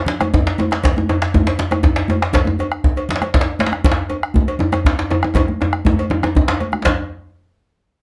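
West African traditional drum ensemble music, driving and powerful at 160 BPM in 12/8, with high-tuned, ringing congas, a deep, dark bombo, a metallic cowbell, a background djembe with a warm, deep tone and an up-front, band-limited, vintage-sounding djembe struck with hard hands, all recorded with close, detailed microphones and light reverb, with drum fills from 0.5 to 0.8 and from 5.4 to 6.9 seconds in this short cut from a longer piece.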